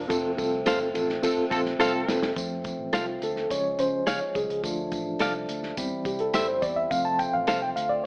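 Uptempo 1960s-style soul, uplifting and joyful, heard through a small-room, AM radio sound in this short excerpt from a longer piece. A reedy, mellow electric piano with fast tremolo sits up front and takes a solo from 2.4 seconds, over a fat, lightly overdriven tonewheel organ with key click, a round, foam-muted bass, a dark, smooth drum kit that plays a fill just before the solo, and a jingly tambourine. Bright, compressed guitar stabs dot the groove, while a horn section with light vibrato adds a brief second line at 1.2 seconds.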